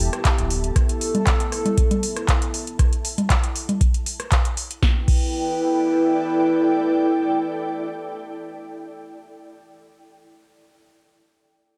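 A straight 4/4 acid house groove at 118 BPM drives this gritty excerpt in E minor, built on an overdriven, deep electronic kick and an analog drum machine of punchy snare, metallic hats, handclaps, congas, rim clicks and crash that both stop at 5.2 seconds. A round, dark analog bass sounds only briefly at the start, while a detuned, wave-folded dark pad holds moody Em chords with lush chorus and sidechain pumping, joined by a mellow, ethereal airy pad carrying ensemble chorus and tremolo. The dreamy mix is soaked in plate reverb, and the two pads sustain alone after the drums drop out, until 9.5 seconds.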